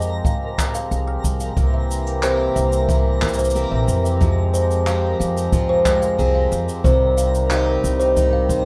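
A woody pizzicato upright bass sits up front in this delicate, wistful folktronica excerpt in F minor at 91 BPM, joined by a ringing, thumbnail-plucked kalimba with delay on the second line, a reedy, breathing pedal harmonium holding sustained chords, a distant, boomy kick drum and brushed cabasa and handclaps with a rolled-off top, a twinkling granular texture with its own reverb sparkling in the background, and, from 1.6 s, a boxy, shimmering, octave-doubled plugged-in twelve-string acoustic guitar picking delayed arpeggios over Fmadd9, C7 and Cm, all set in a small room for a rough home-demo feel.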